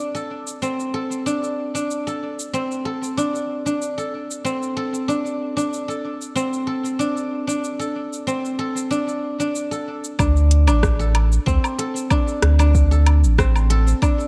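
A guzheng opens this mystical organic downtempo excerpt, its fingerpicked arpeggios ringing and silvery up front, trailed by tape echo. Almost at once a produced afro-pop drum kit slips in beneath it, its metallic hats, rim click, shaker and woodblock roughened by overdrive. At 10.2 seconds the music moves into a new section: a round sine sub bass arrives, deep and up front with tube saturation and sidechain pumping, alongside an overdriven electronic kick drum. The bass drops out at 13.9 seconds, just before the fragment is cut off. Light reverb and a dark production lend the recording a warm, dusky glow.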